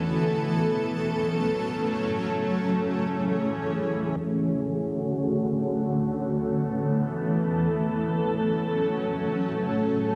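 Blissful and floating, this short hip hop cut from a longer piece drifts in free time in A major, where a lone granular cloud pad, blurred, detuned and bright up front, sustains slow-attack chords from Esus4 through F#m, Amaj7 and Dmaj7 in a lush hall reverb, with a filter sweep shaping the pad from 4.2 seconds to the close at 10.2 seconds.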